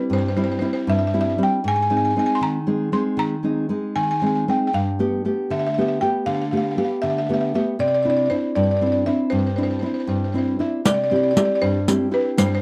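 Set in a lilting 6/8 at 78 beats per minute on the dotted quarter, this brief excerpt of a sunny, romantic Italian folk serenade in C major moves with a straight, unhurried sway. A buzzing marimba struck with medium hard mallets carries the melody across a range from B4 to C6, its hardwood bars giving a woody, airy, percussive bite that sits up front in the mix. Beneath it, a fingerpicked nylon-string guitar in a classical vein supplies warm accompaniment between G2 and G4, moving through C, Ab, Gadd9 and Cadd9 before returning to C at 10.9 seconds. At that same moment a riq joins, adding bright jingles struck with hard hands. The sound is dry and close, like a small-room 1970s studio recording.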